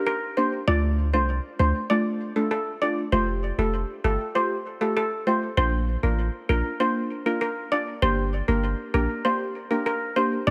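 Dancehall groove at 98 BPM in F major, bouncy and summery in mood, cut from a longer piece. A bright, shimmering steel pan carries the melody up front between A4 and D5, its metallic ring struck with hard rubber sticks on a double seconds pan and trailed by a digital delay. Beneath it, a deep, mellow chord stab with a fast attack and short decay plays the accompaniment, its dark, wave-folded tone coloured by chorus and phaser. A boomy 808-style bass enters at 0.7 seconds, sitting up front with a sine body, a noise layer and a decaying tail between F1 and D2. The harmony moves from Gm and Dm to Fadd9 at 3.1 seconds, then through Bb back to Gm, all set in a light reverb with small room ambience.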